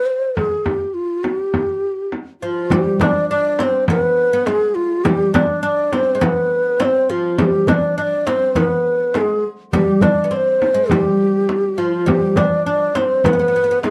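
A straight 4/4 pulse carries this melancholic, longing piece of Arabic maqam ensemble music, cut from a longer performance. A breathy, mellow reed ney opens with the melody, sitting up front with vibrato, a soft attack and a hollow tone whose highs are rolled off. A deep, large frame drum with a vintage, band-limited character joins at 0.4 seconds, also placed up front. At 2.4 seconds a fretless, plectrum-plucked oud adds a woody second line in a low register, its double strings giving it depth. Just after, at 2.7 seconds, a small, high-pitched clay-shelled darbuka played with soft hands enters as the music moves into a new section; its natural skin sounds compressed and saturated. Light reverb and a dark, warm production wrap the ensemble.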